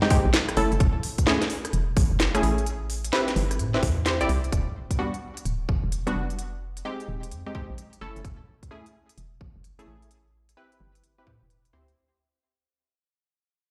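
UK garage in a two-step style, this bouncy, soulful clip moves at 129 BPM with a swung 16th-note feel and fades out across its full 12 seconds, cut from a longer piece. Punchy, detuned sawtooth chord stabs with a filter sweep, chorus and digital delay carry a progression of minor ninth chords, starting on a rootless Fm9 and cycling through F#m9, Am9 and Em9. Underneath, a hollow, dark FM bass with a knocking, fast-attack character enters at 0.3 seconds and bounces in the low register. The garage drum kit brings a cracking snare, crisp hats and a rim click, joined by a tight electronic kick, both sitting up front with a tape-tinged, layered, produced sound. The drums carry the character of being re-recorded in a large room, and a light touch of big studio reverb surrounds the mix, which sounds as if played on a big sound system in a bare room.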